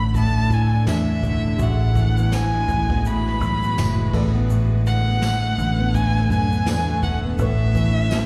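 Heartfelt and easy-going, this acoustic pop excerpt moves at 83 BPM with a gentle 16th-note swing, heard as a live gig through a venue's PA with recital hall reverb. A rich, focused violin with vibrato and a slapback echo carries the melody over a dark, fingerpicked dreadnought guitar and a round, punchy foam-muted electric bass. Tucked behind them are a woody, slightly detuned upright piano with its own slapback echo, a cloudy granular pad, a distant brushed drum kit that comes in at 0.1 seconds, and a jingly tambourine that joins at 0.9 seconds, all moving through chords from Dsus2/A to Aadd9.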